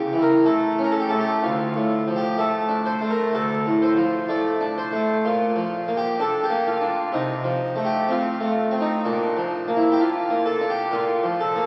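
In a loose, rubato four-beat pulse, this short excerpt of a baroque-style suite movement moves with a flowing, dance-like grace, its harmony passing from A to Dm, then Bb, F/C and back to Bb. A solo French-style harpsichord with two sets of strings carries everything, its plucked, full tone close-miked and up front while spanning D2 to D5. A lingering church reverb surrounds the instrument, and the crackle of a very old 78 rpm record lends the sound an aged patina.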